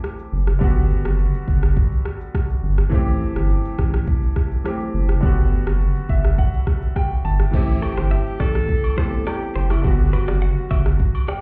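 A bright baby grand piano with plate reverb and an electronic afro-pop kit with a deep kick open this mellow, hypnotic afrobeats excerpt at 104 BPM in A dorian, joined at 0.3 seconds by a thick, saturated sub bass over Am7 and Gmaj7. A breathy, whispered alto saxophone with vibrato and delay enters at 7.5 seconds, followed at 7.8 seconds by a twangy, clean electric guitar riff and background agogo bells and woodblock, all heard muffled through a wall with club reverb.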